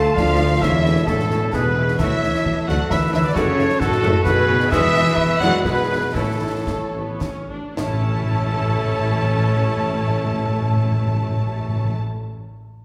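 In a straight 3/4 pulse that moves between 105 and 134 BPM and slows from 4.0 to 7.8 seconds, this heroic, triumphant adventure-film cue in A major sets lush violin sections carrying the melody and a second line over a distant viola accompaniment, with a dark cor anglais and an airy, hollow flute weaving further lines, a very quiet French horn section holding sustained chords, vintage-toned trumpet stabs, and a bass of mellow tuba, rich cellos and double basses, while concert snare, bass drum and bright clash cymbals play until 7.9 seconds and round, dry timpani strike early and return at 6.2 seconds as the harmony lands on A, all set in a reverberant concert hall.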